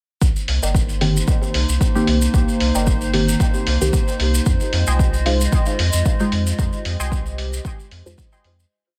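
The recording sounds hazy and echo-heavy, with light reverb and a tape-softened glow. This is a short, nocturnal dub techno piece at 113 BPM in 4/4, with a gentle swing on the sixteenths, set in C minor and moving from Cm7 to Fm7 at 4.5 seconds. An up-front, deep four-on-the-floor electronic kick drives the groove alongside a round sine sub bass playing a syncopated riff. A muffled, pitched-down electronic hi-hat and grainy, distant maracas shaking sixteenths through dub echo fill out the rhythm. Sparse, mellow chord stabs with chorus, phaser and a filter sweep echo over a warbling, vintage-sounding pad that holds sustained chords with a sidechain pumping, while a detuned, lo-fi pluck repeats echoing chord shapes in the background. A glassy texture of drifting overtones holds a single high note from 1.0 seconds, and the piece fades out from 5.9 seconds.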